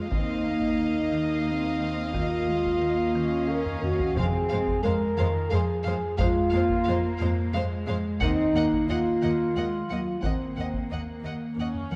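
A warm, reverberant scoring-stage sound frames this uneasy, ominous suspense cue in 3/4, where a dark, up-front French horn section holds sustained chords beneath intimate sul tasto violins carrying the melody and a second line, with a background viola accompaniment, cello and double bass sharing the bass, a buzzing, woody marimba riff, heavy-stick taiko drums with fills at 3.7 and 11.7 seconds, and an articulate timpani entering at 4.2 seconds as the harmony moves from Ebsus2 to Fm and Ebmadd9.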